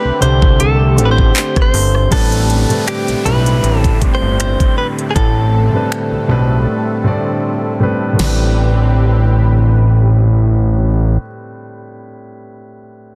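A lightly swung 79 BPM groove in 4/4 from a produced, electronic R&B kit (knocking kick, fat snare with soft clipping, smooth hi-hat, finger snaps, handclaps, rim clicks and a crash) anchors this moody, late-night contemporary R&B fragment in A minor. A clean, compressed, direct-recorded electric guitar with tape echo carries the melody, a deep, open grand piano accompanies and plays on alone until 13.2 seconds, and a soft, detuned sawtooth pad with chorus holds chords in the background. A thick, warm analog bass sits up front, and an electronic downlifter enters at 2.1 seconds before the drums fall silent at 6.7 seconds, the whole mix pressed into a dense, heavily limited modern master.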